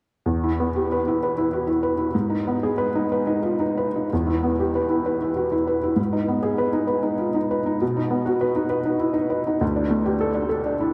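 A huge, dreamy wash of ambient reverb surrounds this short cut from a longer piece, with a felt-muted upright piano sitting up front, its soft, mellow tone and short sustain trailed by delay. In this intimate, reflective neoclassical minimalist solo, the piano plays a rubato 6/8 within a range of D2 to B4, cycling between Em and G#m before a new passage from 4.1 seconds reaches B and comes to rest on Dsus4 at 9.6 seconds.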